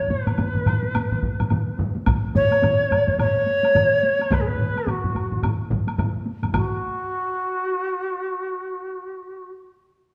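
A stone room's reverberant glow surrounds this driving, powerful fragment of Japanese traditional taiko ensemble music in a swung 4/4, where an airy, reedy bamboo shakuhachi with vibrato and tongued chiff carries the melody up front until 9.5 s over a background solo taiko on heavy sticks, three taiko ensemble parts struck with hard and heavy sticks (one joining at 1.2 s), and a dry, woody woodblock, the drums all falling away by 7.1 s.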